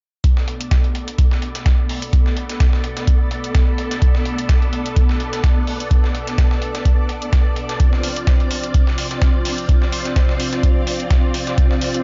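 Acid house with a hypnotic, raw pull, this excerpt rides a swung 4/4 groove in which a deep, up-front analog kick anchors a metallic electronic hi-hat and a gritty, tape-toned sampler-style kit of hats and a medium-tuned snare, compressed and re-recorded in a large room with its lows filtered away. Over it, a lush vintage string machine holds soft-attack sawtooth chords with a sub octave, ensemble chorus and a pumping sidechain, moving from Bm7 to Dm7 at 7.8 seconds. The mix is dry, with little reverb, and has a muted top end.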